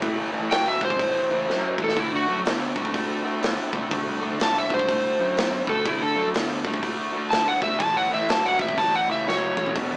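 Blues rock with a southern rock edge, this swaggering, raunchy excerpt swings at 123 BPM in 4/4, moving from A7 to D7 and back to A7 at 7.8 seconds. A raw, double-tracked garage guitar riff with overdrive and spring reverb sits up front beside a growling, overdriven picked bass and a big acoustic rock kit with a punchy kick, which throws in fills at 1.5 and 9.3 seconds. An overdriven, fingered slide guitar carries the melody over a very quiet, gritty tonewheel organ holding sustained chords with key click and vibrato, all captured with the rough tube-saturated character of a rehearsal room heard through a small speaker.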